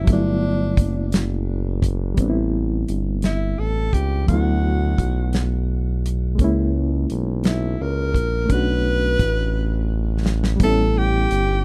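A breathy tenor saxophone, clear and scooped with jazz vibrato, sings a tender solo line over a reedy, worn electric piano with fast tremolo and a smooth, evolving synth bass in this intimate slow R&B passage in six-eight at 57 BPM, cut from a longer piece. A damped 70s kit with a fat snare and tight kick sits up front, adding a drum fill from 9.5 to 10.6 seconds. The chords move from Gmaj13 through Am9, D6, A#m7b5 and Bm9 to A9, all in a dry, rough home-demo mix.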